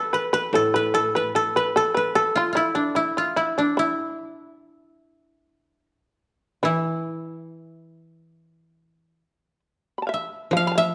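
An up-front koto carries the melody in this short excerpt of Japanese chamber music, its fingerpicked tone dry and woody as it moves between D4 and F5. A shamisen plays a second line from the opening moment, plectrum-plucked and fretless, with a buzzing, percussive bite that still sounds mellow and powerful. A second koto joins at 0.5 seconds in a low accompanying register, sharing the same close, acoustic character as the lead. The music is austere and calm, drifting in a rubato 4/4 at roughly 65-75 BPM in E in the sen mode. A moderate recital hall reverb surrounds the trio, giving the plucked strings a sense of space within what is cut from a longer piece.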